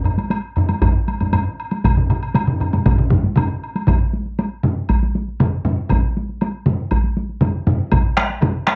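Japanese traditional taiko drum ensemble music, ceremonial and driving in a straight 4/4, taken from a longer piece and lasting under nine seconds. Two taiko ensembles struck with hard sticks frame the sound, one distant yet up front in a large room and the other vintage and band-limited. Two solo taiko drums join them, one close and up front under hard sticks, the other heavy-sticked, compressed and saturated, and a woody woodblock ticks along from 0.1 seconds. The dry, close studio recording carries a touch of light reverb and a 1970s character, with the second ensemble joining at 1.8 seconds and a new section arriving at 3.9 seconds.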